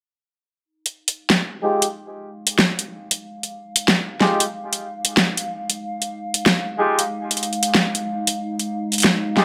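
A swaggering, gritty glitch hop excerpt in F minor at 93 BPM in 4/4, with a 62% swing on the sixteenths and tuning set to A4 = 442 Hz. The dubstep drum kit comes in first at 0.9 s, up front with a huge, layered snare and metallic hi-hats that carry a tape-tinged, produced electronic edge in a studio ambience. At 1.6 s a tight jazz-style horn section adds stabs between Ab3 and G4; it sounds roomy and distant yet sits forward in the mix, shaped by a low-pass filter sweep and a digital delay. From 1.9 s a warbling, nostalgic lo-fi pad fades in beneath, its detuned square and triangle tones sustained on a slow attack and long release, dark with chorus and its own reverb, spanning Ab3 to F5. The harmony rests on Fm7 throughout, and the whole passage shares a light reverb and digital ambience.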